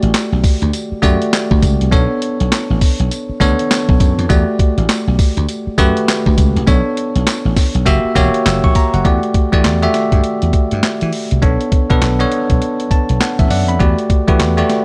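New jack swing R&B with a punchy, bouncy swung sixteenth feel, driven by a boom bap sampler-style kit whose compressed, pitched-down hits carry vintage 12-bit grit: a thumpy kick, a high-tuned snare, hi-hat, handclaps and tambourine sit up front. An amped, bright slap bass and a clean, direct, bell-like tine electric piano move through Em11 and Bm9 chords, with an F#7b9 at 7.9 seconds leading into a second section at 9.1 seconds, where the electric piano adds a fill at 12.6 seconds. The mix is dry, with little reverb.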